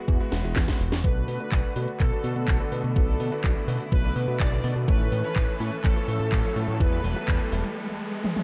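A brassy, wave-folded analog synth lead opens this playful, romantic italo disco excerpt, carrying the melody with chorus and digital delay over sustained chords from a clear symphonic string section set in the background. A fat, detuned sawtooth bass and a thumpy, sampler-style kick sit up front. A layered house kit with a cracking snare, metallic hats, handclaps and toms adds an opening drum fill. Bright concert grand piano stabs, filtered and delayed, sit behind the mix, and from 1.0 s both the piano and the strings move through a filter sweep as the harmony passes from E to Bm7, A and Esus4. A background riser builds from 5.0 s into a short break at 7.8 s. The production is dark and warm, with light reverb and digital ambience.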